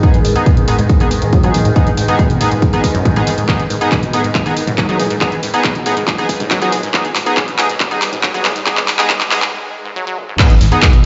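Driving peak-time techno at 139 BPM in G# minor, this intense 11-second cut builds from the start with a heavy layered kick, an up-front techno kit of tape-warm hats, claps, toms and crash with a drum fill from 3.5 seconds, a squelchy resonant acid saw riff under a filter sweep, edgy nasal oscillator-sync stabs, a background drone of moving overtones with phaser, a very quiet warbling nostalgic pad and, from 2.1 seconds, a faint riser. A break at 9.5 seconds then leads into a gritty sampler-style kit at 10.4 seconds and a thick saturated sub bass at 10.5 seconds, all heard as if on a big sound system in a bare stone room.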